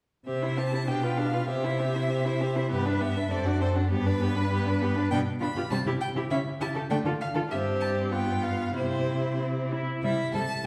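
In a lilting two-beat metre with a freely flexing, rubato pulse, this quick classical-period movement for string quartet feels cheerful and graceful. All four players enter together at 0.3 s: the first violin carries the melody with a rich, focused vibrato tone, while the second violin shapes a lower supporting line. The viola fills in the accompaniment expressively, sliding between notes with portamento, and the cello anchors the bass with a clear, smooth, even sound that sits up front. The harmony moves through bright tonic and dominant progressions before settling home on the tonic at 8.8 s. A wet recital-hall reverb places the quartet further back in the room, giving this brief cut from a longer piece a spacious, airy glow.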